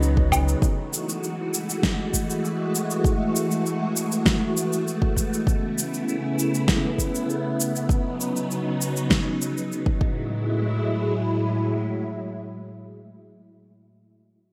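A relaxed, smooth sunset chillout excerpt opens with a brief flash of gentle, warbling electric-piano-like synth keys and a round sub bass. Both fall away by 0.6 s, while a silky string machine, treated with phaser and ensemble chorus, holds dark sustained chords through to 13.5 s. Up front, a fat electronic snare with cabasa and woodblock under gated reverb is joined a moment later by a deep, tape-toned electronic kick, and both stop around 10 s. The bright, 1980s-style digital production is bathed in a moderate plate reverb as the harmony drifts among ninth and suspended chords.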